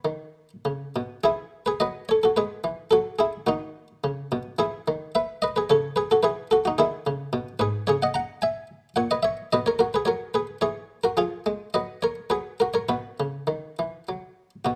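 Close, detailed microphones and a light reverb capture this short passage cut from a longer piece, a flowing, dance-like baroque-style suite movement for solo harpsichord. The instrument plays with its buff stop engaged, giving a muted, lute-like pluck that sits dry and up front, with an Italian-style character. In 3/4 at 108 BPM, the rubato phrasing lets the dance lilt breathe, spanning from G#2 up to A#5. The harmony settles in E major, then turns toward B major from 7.9 s, passing through C#m, a diminished chord and an Fm before closing on B at 12.9 s. The harpsichord plays alone from the start until 14.8 s.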